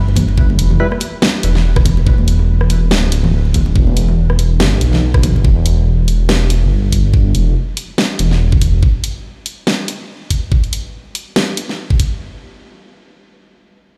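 A dark, detuned sawtooth bass dominates this brooding, heavy piece of deep dubstep, rumbling up front in a deep, beating register from D1 to B1 before it drops away at 8.8 seconds. At 142 BPM in 4/4 with a half-time feel and a swung sixteenth-note groove, the music sits in E phrygian over a single E minor chord. An up-front electronic kick with a knocking character and a layered, produced dubstep kit of hi-hat, rim click and a huge snare carry the rhythm through to the end. Bright acoustic congas with hard hands sit in the background, trailing a dub echo until they fall silent at 5.4 seconds. A brief, hollow organ-like stab flickers in at 0.8 seconds, its mellow, wave-folded tone colored by chorus, phaser and dub echo. The whole mix sounds as if played on a big sound system in a bare room, bathed in large studio reverb, and it is cut from a longer piece.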